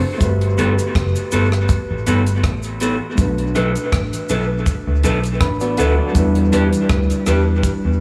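Up front, a dark, round, foam-muted picked bass anchors this sweet, romantic lovers rock reggae excerpt at 81 BPM in G major, alongside a dry reggae kit with a tight kick, hi-hat and rim click, a background cabasa with dub echo, a worn, slightly out-of-tune tine electric piano with dub echo that adds a fill from 5.0 to 6.2 seconds, slightly broken-up lo-fi guitar stabs with dub echo, and a very quiet compressed guitar arpeggio at 5.6 seconds, moving from Gmaj9 to Bm7 to Em7 in a small, lightly reverberant room.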